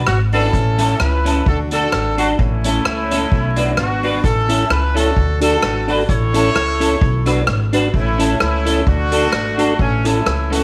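A tight, warm horn section carries the melody with vibrato from the start of this upbeat, bouncy ska passage, up front beside a woody, thumpy pizzicato upright bass and an airy drum kit of hi-hat, rim click and boomy kick, all over a lightly swung Bm–A–D–A cycle. A clean, picked semi-hollow guitar enters at 0.3 seconds, its accompaniment coloured by ensemble chorus and slapback echo, and at 4.5 seconds a mellow, flute-like tonewheel organ adds soft background stabs through chorus vibrato and a stopped rotary speaker. Light reverb, small-room ambience and vinyl crackle surround this short section cut from a longer piece.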